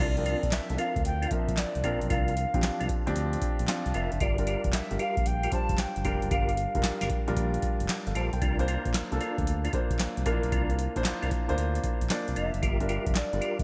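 A swung 16th-note groove at 114 BPM drives this punchy, slick new jack swing excerpt, where a booming analog drum machine with deep kick, crisp gated-reverb snare, handclaps, metallic hi-hats and crash sits up front beside a smooth, gliding sawtooth synth bass, a polished concert grand piano entering at 0.2 seconds, percussive tonewheel organ stabs with key click, chorus vibrato and fast rotary speaker, and a distant, airy alto ocarina melody that drops out at 7.1 seconds and returns at 12.4, all over a long C9sus4 that turns to Gm7 near the end in a bright 1980s-style digital production with moderate plate reverb.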